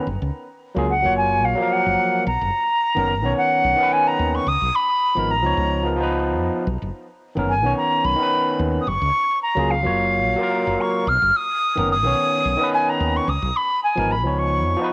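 Blissful and warm, this sunset chillout excerpt moves at 109 BPM in 4/4 with a light sixteenth-note swing in B lydian, cut from a longer piece and cycling through chords like F#maj7, Bmaj9 and C#13. A barky, gritty tine electric piano pushed through a combo amp carries the accompaniment with cassette-tape colour, while a dark, round fretless electric bass with a woody, hollow-body character anchors the low end from 0.1 s. Above them, an airy concert flute with a straight tone and crisp attack sings the melody from 0.9 s, roughened by 12-bit sampler grit and tape echo, all set in a moderate spring reverb with the homely feel of a cassette recording.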